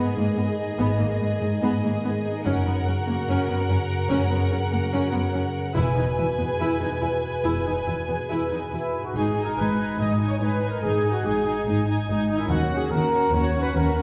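A trumpet section, up front with a soft attack and light vibrato, enters at 8.7 seconds with stabs in this cinematic, swashbuckling adventure-score excerpt in G# minor at 144 BPM in a straight 4/4. Bowed strings carry the piece from the start: a dark, woody violin section sits distant on the melody, a second violin section adds a smooth, even line beneath it, and a focused, close viola section supplies lush accompaniment. A ringing concert harp plays fingerpicked arpeggios, while an expressive cello section holds the bass alongside a chamber double bass section with a smooth top that joins just after the opening. The first 9.2 seconds form a determined build-up over G# minor, F# and E before the music returns to G# minor and moves to D#m7, touched by a brief triangle and a round, soft-mallet timpani note in the background at 12.5 seconds. A wet scoring-stage reverb places the orchestra further back in the room, giving the heroic mood a spacious sheen.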